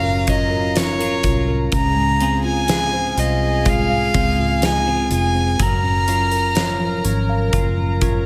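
An intimate, up-front solo violin with light vibrato, a soft attack and an airy sul tasto bow carries the melody of this heartfelt, tender pop ballad in Db major at 62 BPM, over a clean tine electric piano, a reedy, gut-string chamber string section holding sustained chords, a bright, twangy twelve-string electric guitar picking arpeggios with tape echo in the background, a dark, round, foam-muted fingered bass, and a huge arena drum kit with a fat snare and punchy kick that enters at 0.3 s, set in light studio reverb.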